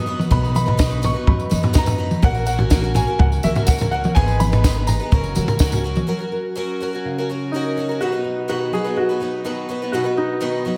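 An up-front compact cocktail drum kit with a punchy kick and high-tuned snare drives this hopeful, nostalgic indie folk excerpt at 125 BPM in B major, alongside a jingly tambourine, a woody pizzicato upright bass, a shimmering octave-doubled twelve-string guitar and a warm upright piano melody touched with subtle chorus and diffuse ambient delay, until the drums, bass and tambourine stop around 6 seconds and a bright, full-bodied fingerpicked steel-string guitar enters at 6.1 seconds beneath the piano, all within a dreamy, reverb-soaked hall.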